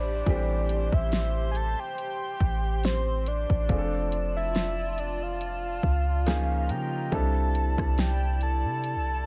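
A smooth, electronic R&B drum kit sets a lightly swung sixteenth-note feel from 0.3 s, its soft kick, fat snare, rim click and metallic hi-hats carrying an overdriven edge up front. Beneath it, a deep, boomy 808-style bass with a sine body, a noise layer and a fast, decaying attack sits equally forward. A natural-sounding baby grand piano plays the accompaniment, while a hollow, airy pad with a flute-like quality holds sustained chords under a chorus effect. On top, a round, dark octave-layered synth lead with detune and vibrato carries the melody, colored by chorus and tape echo. A very quiet electronic downlifter sounds until 3.7 s, and this late-night, sensual contemporary R&B excerpt moves from Am9 through F6 and C#69 to C69 inside a digital ambience.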